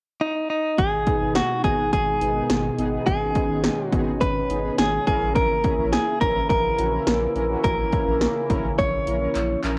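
A clean, direct-recorded electric guitar opens this driving, melancholic synth-pop excerpt at 105 BPM in G# minor, its picked, compressed melody shimmering with harmonic tremolo up front before a punchy, overdriven analog drum machine, a round, deep analog bass and an evolving, wave-folded resonant pad with chorus and phaser join at 0.8 seconds. Fat, detuned analog synth brass with vibrato sits in the background as the chords move from G# minor to A# diminished at 5.1 seconds, and a drum fill closes the passage at 9.4 seconds. A moderate spring reverb and the warmth of a home cassette recording give the whole a hazy, lo-fi character.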